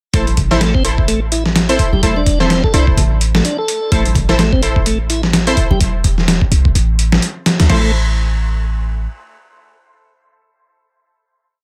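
A raw, funky breakbeat piece opens at once on a gritty, overdriven sampler-style drum loop with a thumpy kick, deep boomy 808-style bass with long gliding notes, a piping tonewheel organ riff through slow rotary speaker, dub echo and 12-bit grit, and bold detuned orchestra-hit-like stabs carrying built-in reverb and cassette tape colour, while bright, soft-handed congas sit in the background until 5.8 seconds, the drums and organ fall away near 7.8 seconds, and the stabs ring out the final chord to 10.9 seconds.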